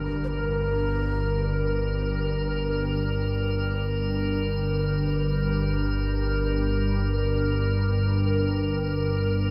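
Cavernous and dark, this dark ambient drone drifts in free time, a brief passage cut from a longer piece and resting on a single Gm7 chord. An organ-like drone sits up front from G1 to G2, calm and detuned, its sine tone swelling in slowly and sustaining with a long release, thickened by ensemble chorus and its own reverb. Above it an icy glass pad holds Bb4, airy and crystalline with a noise layer, given extra sparkle by chorus and shimmer reverb. A bright grand piano plays arpeggios with long sustain throughout, though it remains barely audible. From 0.2 to 1.9 seconds a breathy, mellow shakuhachi offers a short bamboo phrase between Bb4 and C5, its crisp chiff close-miked yet set in the background and trailed by shimmer reverb and diffuse ambient delay. The dreamy mix is soaked in a cathedral-sized reverb with a 6.7-second tail.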